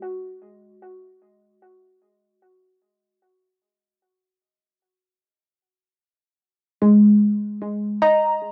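A soft, round synth pluck is the sole voice in this weightless, luminous ambient fragment in free time, sounding briefly at the very start and again from 6.8 to 8.5 seconds across a range from G#3 to A#5. Sitting up front with a dark, gentle edge, it is colored by analog chorus and tape echo. A wet booth ambience and the grain of a home cassette recording frame this passage cut from a longer piece.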